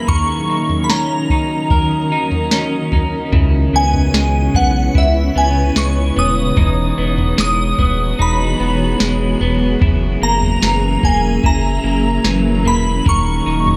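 A shimmering, up-front bell opens this hazy, haunting dream pop excerpt, its bright FM tone thickened by ensemble chorus and trailed by tape echo as it carries the melody. Beneath it, a cloudy granular pad holds evolving, blurred chords with a slow attack and long release, while an electric guitar at the edge of break-up picks compressed arpeggios through subtle chorus and its own tape echo. A soft vintage rhythm box joins almost at once, setting a straight 4/4 pulse with a deep analog kick, crisp snare and toms. At 3.3 seconds a thick, saturated sub bass arrives up front, sustaining sine-like low notes under a progression that moves from D#m7 through C#m7, Emaj7 and F#7 before returning to D#m7. The mix is echo-heavy with light reverb, leaving the piece floating in a haunting haze.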